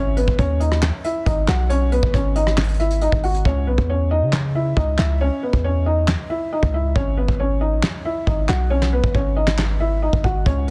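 A felt-muted upright piano and a hard-hitting 808-style bass open this dark, eerie trap excerpt together, with a soft brush drum kit joining at 0.2 seconds in a half-time feel. The piano carries the melody in a soft, mellow, intimate voice, its audible action noise kept up front and shaded by a low-pass filter and delay. Beneath it, the 808 bass is punchy and heavy, a sine tone with a noise layer, a fast attack and a decaying tail. The brushed kit of kick, snare, rim click, handclaps and hi-hat has a smooth, rolled-off top, a fat snare, a tight kick and a vintage 12-bit sampler grit. The harmony shifts from G#m to C#m as the hi-hats drop out at 3.5 seconds, then returns to G#m at 7.0 seconds. A small room ambience surrounds the parts, and the master is dense and heavily limited.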